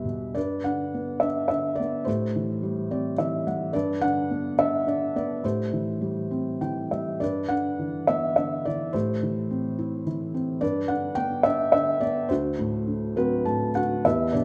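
A felt-muted upright piano plays alone in lyrical classical style, moody and bittersweet, in a rubato three-beat lilt; its soft, boxy, up-front tone carries audible action noise within a moderate recital-hall reverb, as the harmony sways between G and A minor seventh before resting on D7, with short fills at 2.6, 6.3 and 13.2 seconds in this passage cut from a longer piece.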